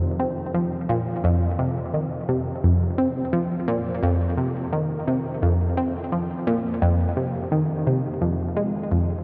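A lone analog pluck synth carries this short ambient fragment, its detuned sawtooth tone sounding warm, round and nasal, with a noise layer woven into its sound. Set at 86 BPM in 4/4 with a straight feel in F minor, the part sits between F2 and C4, placed bright and up front in the mix. Each note has a fast attack and short decay shaped by a filter pluck, while chorus, phaser and delay add shimmer and echoing trails. Everything floats in a huge, wet ambient reverb with a long 7.6-second tail, and a worn cassette character lends a warbling pitch drift to the sound. The result feels hypnotic and expansive across its 9.2 seconds, cut from a longer piece.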